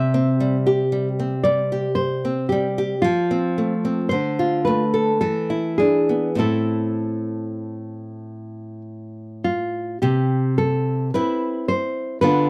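A dry, close studio sound in a 1970s style, touched with light reverb, frames this solemn, melancholic romantic duo for two nylon-string guitars, cut from a longer piece, in A minor at a slow, rubato 48-58 BPM in 3/4. Up front, one fingerpicked guitar sings the melody with a warm, classical tone and audible finger squeaks, while the other, bright and small in sound, also fingerpicked and also up front, supplies the accompaniment in a lower range spanning A2 to A4. The harmony moves through C, F, Bm7b5/D and E7 before settling on Am, and a new section begins at 10.0 seconds on C.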